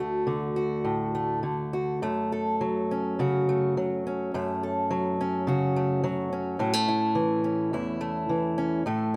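The rhythm is loose and rubato, drifting around 105 BPM in 4/4 and giving this short folk fragment of solo fingerstyle guitar an unhurried, breathing feel. A single fingerpicked acoustic archtop guitar carries the whole piece, ranging from a low D2 up to A4, and its mood is gentle and pastoral. The harmony rests on D, shifts to F#m at 2.0 seconds, and settles on A at 6.6 seconds before the cut at 9.2 seconds. The archtop sits up front with a warm voice, and small finger squeaks on the strings add an intimate, human touch. A moderate large-studio reverb with a 1.4-second decay lets each plucked note hang softly in the air.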